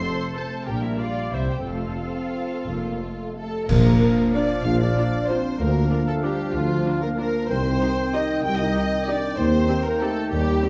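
Muted, veiled violins carry the melody and a second line over rich con sordino violas and mellow French horn chords, opening an elegant, sweeping excerpt of an orchestral ballroom waltz in F major at a rubato 167-206 BPM, as dark muted cellos and double basses settle beneath, dark cymbals and concert bass drum sound from 1.7 to 4.3 seconds, a hollow flute ensemble enters at 3.4 seconds, and at 3.7 seconds the music turns to Bb major with a band accent as a distant clarinet, a close-miked oboe, a shadowy bassoon and a soft-edged tuba join, all in a dark, warm scoring-stage reverb.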